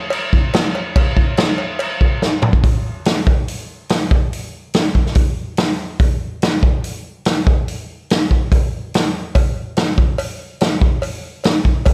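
A natural studio-room sound with light reverb frames this gritty, driving rock passage at 143 BPM in a straight 4/4, cut from a longer piece. An up-front vintage acoustic drum kit carries it throughout, with a punchy kick, medium-tuned snare, toms, hi-hat and dark crash cymbals under a rolled-off top, and a drum fill at 2.2 seconds leads into the next section. A close, metallic cowbell with slapback echo sits in the background for the opening 2.5 seconds and returns at 9.3 seconds.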